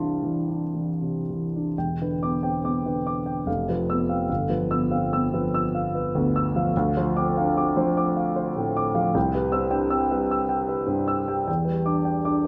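In a flexible triple metre, the tempo drifts with rubato between 56 and 80 BPM, giving this impressionist classical solo piano passage an unhurried, breathing pulse. A single grand piano carries everything from 0.0 to 12.5 seconds, its tone warm, present and up front, spanning a broad register from E1 up to E6 with a long sustain. The mood is dreamy and luminous, rooted in C major, opening on a Cadd9 before a brief first idea gives way at 1.7 seconds to a longer second section. The harmony moves through Em7, F5, G6 and Dm7 before settling on a glowing Cmaj7 and returning to Em7 near the close. A wet recital hall reverb with a 1.3-second decay surrounds the instrument, lending the sound a soft halo. The passage is cut from a longer piece, so it feels like a fleeting glimpse into a larger reverie.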